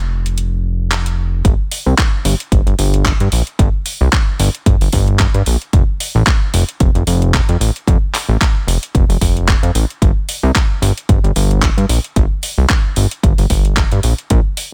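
Nu-disco with a groovy, sensual feel, this short section cut from a longer piece rides a swung sixteenth-note pulse in four. A fat, saturated analog bass opens the recording, its detuned sawtooth tone evolving under a filter pluck with a fast attack and sustained notes, sitting up front in the low register. At 0.3 seconds a pop drum kit comes in with handclaps and metallic hi-hats, layered and produced, set in a small room ambience. The drop arrives at 1.4 seconds as a punchy electronic kick drum joins, placed up front and sharing that same small room. The mix stays dry overall, with bass and kick dominating and the claps and hats sitting lower behind them.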